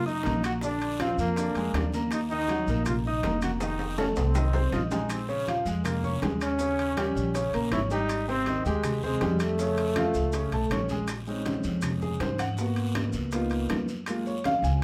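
A bright, close-miked trombone sings the melody up front with vibrato from the very start. Beneath it, a dark, thumpy upright bass on gut strings and a clear, long-sustaining grand piano drive this fiery salsa in Bb minor at 161 BPM. A thick bed of acoustic percussion fills out the groove: warm, distant congas, tight high-tuned bongos kept very quiet, ringing metal-shelled timbales, woody claves, a raspy guiro and grainy maracas. A drum fill bursts in between 3.6 and 5.1 seconds, and the trombone drops out at 10.9 seconds. At 11.1 seconds the piano takes a solo over extended chords until the clip ends. The band plays together live in one small, reverberant room, giving the cut a lively, driving feel.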